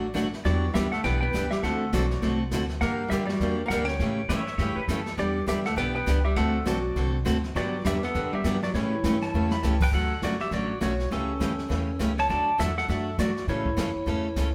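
A bright, twangy lap steel carries the melody from the start over a full-bodied, picked acoustic guitar, a dark hollow-body archtop's second line and a woody, thumpy upright bass, with a brushed jazz kit of dark cymbals and boomy kick joining at 0.2 seconds in this playful, cheerful western swing at 203 BPM in D major. The up-front lap steel uses slide and volume swells, while a warm pedal steel adds brief fingerpicked phrases around 4.3 and 9.2 seconds. The archtop drops out at 9.8 seconds as a drum fill leads into a new section over Dmaj7 and A7/C#, all set in a live stone-room reverb.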